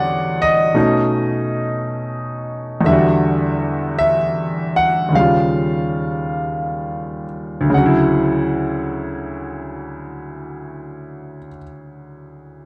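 Swung eighth notes in a slow 4/4 set a relaxed, unhurried pulse, and the time slows down through the first 7.7 seconds. This short solo jazz fragment, cut from a longer piece, features a baby grand piano alone from start to finish. Its brilliant tone sits intimate and up front, with audible action noise and a slapback echo. The harmony moves through rich extended chords, Em9, B9, Em9 and Eb9, before settling on Dmaj9 as a new section begins at 7.7 seconds and runs to the close at 12.7 seconds. A light reverb touches the dry, close 1970s-style studio sound, giving the whole a warm, natural presence.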